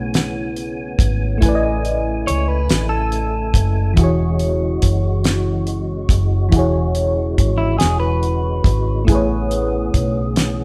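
This intimate, tender slow R&B fragment in six-eight opens with a mellow, warbling FM electric piano run through a phaser. Underneath it sits a fat, lightly overdriven tonewheel organ holding sustained chords with key click, third-harmonic percussion, chorus vibrato and a slow rotary speaker. A dark, round, foam-muted fingered bass sits up front, and a dry, damped 70s drum kit with a fat snare, tight kick, hi-hat and rolled-off top joins almost at once. At 2.3 seconds a clean, compressed, picked electric guitar adds a second line with a vibrato effect and carries it until 9.0 seconds. The harmony moves from Amaj9 to E6/9 and back, and the whole band sounds as if it is playing live together in one room with light reverb.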